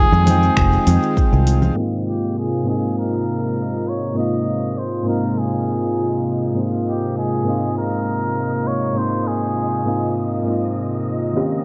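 A worn, warbling cassette-tape sound with pitch drift, light reverb and a muffled top end gives this short cut from a longer sunset chillout piece a relaxed, wistful air at 100 BPM in a straight 4/4. A cup-muted trumpet carries the melody in a veiled, smooth-topped classical style, treated with delay, while round, mellow electric-piano-like synth keys with chorus and an airy, detuned pad hold the harmony, moving from Fm7 to Ab69. At the start, a punchy, up-front fingered electric bass and a deep house kit of congas, finger snaps, metallic hi-hat and shaker, layered with a deep electronic kick, set a brief groove before dropping out at 1.7 seconds. A filter sweep then runs through the longer second section, and from 3.0 seconds a dark, wind-like tuned noise texture drifts in the background. Near the close, at 11.4 seconds, a buzzing, woody kalimba briefly plucks a G4 from a boxy small room.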